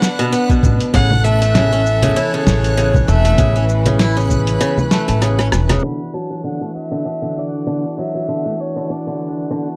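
A clear, close violin carries the melody from the start, its light vibrato and airy bow edged with vintage 12-bit sampler grit and tape echo, while a rich string quartet holds smooth, bowed chords beneath it and a lo-fi sampler-style kit of congas, hi-hat, rim click, shaker and snare sets a muffled, overdriven groove. This hopeful folktronica excerpt moves at 98 BPM in 4/4 with a gentle swing on the 16ths, in D major, tuned slightly below standard pitch. At 0.2 seconds a bright, boxy picked acoustic guitar enters with swinging arpeggios, and a reversed, dreamy, detuned texture sits in the background. A soft, tape-warm electronic kick and a woody, thumpy pizzicato upright bass arrive at 0.5 and 0.6 seconds, giving the bottom end a solid pulse over chords moving from Bm to A. The kick drops out for a drum fill, a band accent lands around 5.7 seconds, and the passage settles on Dadd9 as filter sweeps shape the guitar and string quartet. 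The whole recording is dry and close, with a 1970s studio feel and a softened top end.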